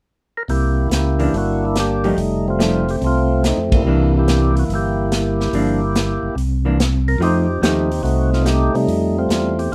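A lightly reverberant, up-front sound opens this brief excerpt cut from a longer soul jazz organ trio piece, greasy and soulful, swinging at 143 BPM in 4/4 in C mixolydian. A percussive tonewheel organ carries the melody from 0.4 seconds, its clean, second-harmonic percussion and key click turning through a slow rotary speaker. Beneath it, a second tonewheel organ plays the bass line, thick and lightly overdriven with chorus vibrato and its own slow rotary, giving the low end a full weight. A vintage acoustic drum kit with dark cymbals, a punchy kick and a medium-tuned snare sits mid-forward with a rolled-off top, while a dark, clean hollow-body jazz guitar adds picked accompaniment between 1.2 and 7.9 seconds. The harmony moves through C9, F9, C9, Gm7, C9 and F9, and the whole band hits an accent at 3.6 seconds.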